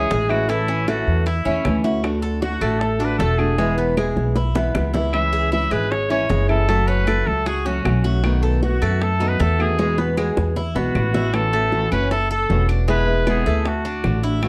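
A bright trumpet with vintage vibrato leads from the start over fingerpicked nylon-string guitar, the metallic double-string arpeggios of a Cuban tres and a thumpy, up-front pizzicato upright bass, while low-tuned bongos and woody claves sit in the background of this sunny, danceable Cuban son and guajira cut from a longer piece, with drum fills at 4.0 and 9.8 seconds and a dark production touched with light reverb.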